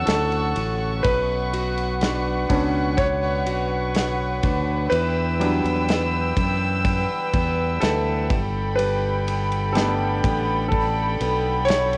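Pop ballad excerpt at 62 BPM, heartfelt and emotional, in which a clear, deep-voiced concert grand piano takes the solo over Dmaj7, Bmadd9, Em7 and Gadd9, backed by floating, soft-attack bowed chamber strings, a picked steel-string acoustic guitar playing arpeggios in the background with audible finger squeak, a bright, up-front fingered electric bass, and a natural country drum kit with a punchy kick, medium-tuned snare and dark ride cymbal, while the piano, strings, guitar and drums carry a cassette-tape tint inside light reverb and the small-room ambience of a home recording.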